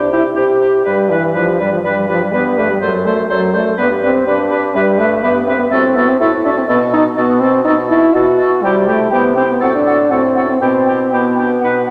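An up-front French horn with a warm, smooth top carries the accompaniment in this stormy, urgent classical-period movement for wind quintet, taken at a quick 123 BPM in straight 4/4 and settling into E minor from 4.8 seconds. Above it, a pure, hollow silver concert flute sings the tongued melody with vibrato from the background, while a distant, roomy oboe shapes the second line, a mellow, distant clarinet fills in the accompaniment, and a mellow bassoon with light vibrato holds the bass. The five parts share a wet concert hall reverb as the harmony moves from C and G through B7 to a closing Em/B at 10.6 seconds, and the passage is cut from a longer piece.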